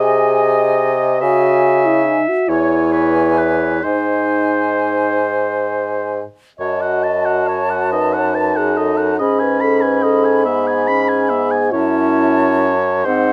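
An airy silver flute carries the melody with vibrato and a soft attack, while an oboe traces a second line with light vibrato, in this melancholic, yearning excerpt from a slow romantic movement for wind quintet, played with rubato in 6/8 at around 42-48 BPM in dotted quarters. Beneath them, a clarinet with a smooth top and a distant, roomy French horn fill out the accompaniment, and an up-front, clear bassoon holds the bass. Close, detailed microphones and light reverb frame the harmony as it moves through C#m, G#m and F#m, tuned to A4 = 439 Hz.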